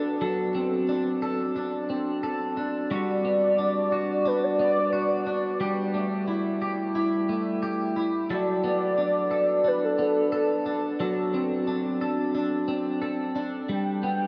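Dream pop excerpt with a dreamy, blissful mood, where a clean, twangy electric guitar picks compressed, up-front arpeggios through analog chorus and tape echo from the start, joined at 2.9 seconds by a velvety, detuned synth lead melody with chorus, vibrato and tape echo, all soaked in a huge ambient reverb over chords moving from D7 through Gmaj7 and Bm7/F# to G.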